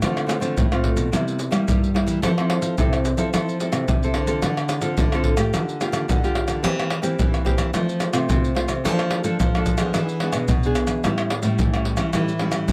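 A straight, festive samba-and-choro groove in four is driven by a compressed, saturated percussion kit of maracas, pandeiro, tamborim and a deep surdo struck with hard hands, sitting up front through the whole excerpt. Two fingerpicked nylon-string guitars in a classical style carry the harmony: one plays warm accompaniment chords while the other, placed up front, holds down a low bass line, with finger squeaks audible on the strings. The joyful mood turns toward a minor-leaning passage at 4.4 s, moving through chords like Gm7/D, Bbmaj7/F and E7 before landing on A7, all captured by close, detailed microphones in a light reverb.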